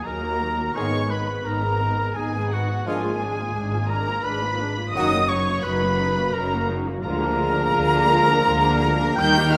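In a rubato 3/4 at 86 BPM, this tender slow romantic movement for symphony orchestra in Eb minor opens with a chamber section of con sordino violins carrying the veiled, dark melody high above the staff, joined by an airy silver flute with lifted highs, a clear solo oboe and a lush background of muted symphonic violins on second lines. Muted violas, with their soft attack and smooth top, fill the accompaniment, while muted cellos and double basses enter at 0.1 seconds to anchor the bass. At 0.8 seconds, as the harmony moves from Ebm to Abm and on toward Bb7, a background French horn section and bright, tight trombones add sustained chords, and very quiet trumpets place stabs, all bathed in a moderate scoring-stage reverb in this short passage from a longer piece.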